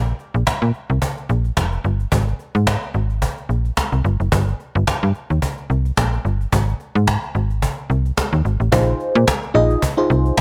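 A close, up-front studio sound with a touch of reverb frames this slick, danceable excerpt of early-eighties boogie funk in a swung 4/4. A digital FM bass with a metallic, slap-like attack opens at 0.0 seconds, joined almost at once by a snappy acoustic cajon with snares, heard in a live room. At 8.7 seconds a vintage FM electric piano enters on a Bb9sus4 chord, its mellow, warbling tone carrying a faint noise layer and a phaser.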